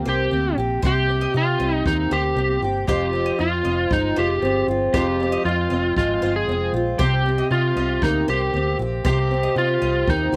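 A dry outdoor recording with little reverb carries this tender, reflective acoustic pop fragment in straight 4/4, moving from Cm7 to Fm7 at 2.9 seconds and back to Cm7 at 7.0 seconds. Up front, a fingerpicked archtop guitar, double-tracked with slapback echo and audible finger squeak, accompanies a dark, overdriven slide guitar melody played with fingerpicks, while a woody mandolin picks bright arpeggios in the background with its own slapback echo. Underneath sit a round, punchy, foam-muted vintage electric bass and a boomy brushed kick drum that enters at 0.8 seconds.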